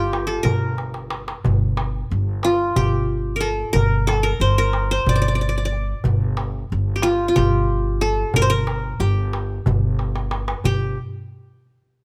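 A bright-edged, plectrum-plucked qanun and a woody, thumpy pizzicato upright bass open together, both up front, setting a longing, hypnotic Turkish makam ensemble groove in 7/8 at 183 BPM in G makam huseyni. The qanun's triple strings carry the melody between F4 and D5 over the bass's dark gut-string G1, while a clay-shell darbuka with natural skin, played with soft hands and given a compressed, saturated sound, keeps the rhythm and adds fills at 0.8 and 10.0 seconds. Light reverb and close, detailed microphones frame the trio until a new section begins at 10.7 seconds, shortly before this cut from a longer piece ends.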